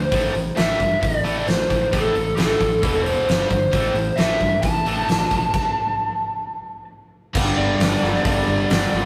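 A lo-fi lead guitar, driven hard through a small amp with digital delay, carries the melody up front from the first moment of this heavy, menacing hard rock passage in A minor at 133 BPM. Beneath it, a bright, overdriven guitar and a scooped, high-gain guitar play riffs in the background, alongside a growly, direct fingered bass and a huge arena kit with a fat snare, punchy kick and bright crash and hi-hat. After a stop at 5.5 seconds, a dark, double-tracked garage guitar joins the riff at 7.3 seconds on a G chord, all captured in a rough rehearsal-room recording with moderate reverb.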